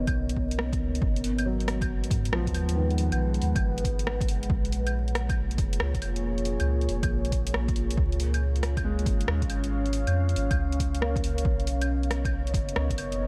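A dreamy, reverb-soaked mix with vinyl crackle and a cathedral-like wash carries this nocturnal, rainy future garage cut, taken from a longer piece, at 138 BPM with a swung 16th feel in G# dorian, moving from Bmaj9 through G#m7, A#m7 and C#. A deep, moody pad of detuned sawtooth unison with a sub octave, chorus and slow attack holds sustained chords throughout, over a soft, round dub sub bass pumping to the sidechain and a punchy, overdriven electronic kick. Overdriven claves, hi-hat and rim clicks fill out the groove, while a woody, intimate upright piano with audible action noise, 12-bit sampler grit and tape echo sits in the background, dropping out at 4.5 seconds and returning at 8.8 seconds.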